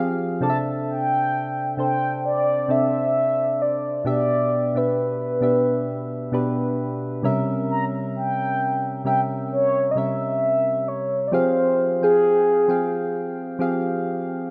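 A slow 4/4 groove with lightly swung sixteenths sets a tender, romantic R&B mood in this short piece cut from a longer work. Soft electric-piano-like synth keys carry the accompaniment from the very start, their round, gentle tone shaped by a fast attack, a decaying tail, a filter sweep and a touch of chorus. At 0.4 seconds a mellow horn-like synth lead takes the melody, its sawtooth-based sound sustained and rounded by a soft attack, with vibrato, chorus, delay and a filter sweep adding motion. Both parts sit up front, though the lead is the louder of the two. The harmony drifts through rich chords such as C69, Em7/B, C7b9 and Fmadd9, all bathed in a lush hall reverb within a rough home demo mix.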